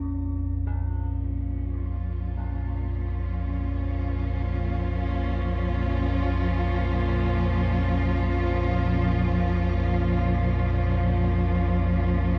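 Dark ambient drone in free time, desolate and unsettling, where a deep, rumbling, warbling drone with built-in reverb sits up front beside a lush bowed cello section that fades in across the full 12.4 seconds with vibrato and shimmer reverb on sustained chords, while an eerie, inharmonic synth bell drifts in the background with arpeggios through chorus, dub echo and shimmer reverb, all set in an echo-heavy chamber with a cassette-tape character.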